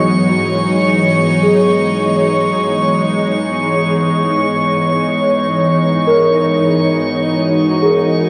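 A lush hall reverb bathes this short, spacious ambient piece, cut from a longer work, in a serene glow. Up front, an ethereal, airy pad holds sustained chords with a slow attack and long release, its detuned unison softened by ensemble chorus. A delicate, bell-like celesta with soft felt hammers sits in the background, ringing out arpeggios through a delay with a sweet, vintage tone. Beneath it, a symphonic cello section holds a clear bass note with light vibrato, while a tense, string-like drone adds a noisy edge shaded by phaser and vibrato. High above, a calm glass-harmonics texture floats with drifting overtones and chorus. The harmony rests on F#9sus4/G# before moving to C#m11/G# at 2.6 seconds, and all five parts sound together throughout the 8.3 seconds.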